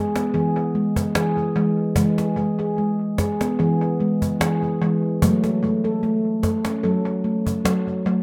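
Meditative world music for tuned percussion: a gentle, dreamy fragment in which an up-front handpan of nitrided steel plays ringing arpeggios under soft fingertips from 0.0 s, with a light swing in its flow. A snappy cajon with snares, struck by hard hands and sitting lower in the mix, is bathed in analog delay. A wet spring reverb gives the whole piece an echo-heavy glow.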